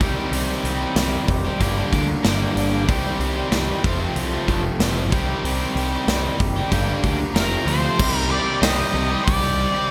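Gritty and driving, this short classic rock excerpt moves at 94 BPM in a straight 4/4, sitting in C dorian with its tuning set slightly low at A4 = 438 Hz. Two crunchy overdriven guitars carry the riff from the start, one warm and up front, the other brighter, both picked and reaching from F2 to G4. Beneath them, a picked electric bass with fuzz and overdrive gives a punchy, bright low end, while an acoustic drum kit in a big room offers a punchy kick, medium-tuned snare, hi-hat and bright crash cymbals placed up front. The harmony circles through Cm, Gm and F before landing back on Cm at 8.0 seconds as the music moves into a new section. At 7.3 seconds a dark, picked lead guitar enters with octave fuzz, distortion and wah, playing a melody between Bb4 and Eb5 over light reverb until the cut at 9.9 seconds.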